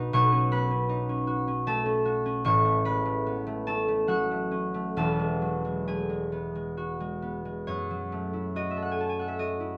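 A wistful, mysterious classical piece for solo concert harp in F# minor, cut from a longer work, unfolds in a rubato 3/4 at 66-80 BPM and is tuned to A4 = 436 Hz, its warm, ringing, fingerpicked tones spanning E1 to D#6 and sitting up front under close, detailed microphones and light reverb, moving through F#m/B, A69 and Eadd9 before shifting to a new section on F#m9 at 7.7 seconds.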